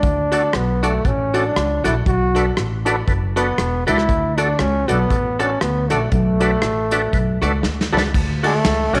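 Ska with a bouncy, upbeat swing, this brief cut from a longer piece moves between D and Bm7 chords. A clear, up-front trombone carries the melody until 7.9 seconds, over a woody, growly pizzicato upright bass and a soft brush kit with dark cymbals, a tight kick and a medium-tuned snare. A dark, clean, picked archtop guitar plays compressed hollow-body accompaniment, while a lightly overdriven tonewheel organ adds stabs from the background through chorus vibrato and a slow rotary speaker. A drum fill marks the close of the opening section, and at 8.5 seconds a breathy, raspy tenor saxophone takes over the melody with gritty vibrato. A moderate echo-chamber reverb gives the sound a roomy studio sheen.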